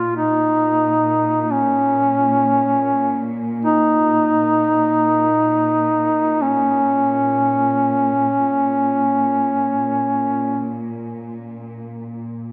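Solemn and longing, this Caucasian folk lament sets an up-front solo duduk, vintage in tone with vibrato and scooped notes, over a smooth, even bowed drone from a studio cello section, heard in a moderate church reverb, with the duduk stopping at 10.7 seconds while the cellos sustain until 12.5 seconds.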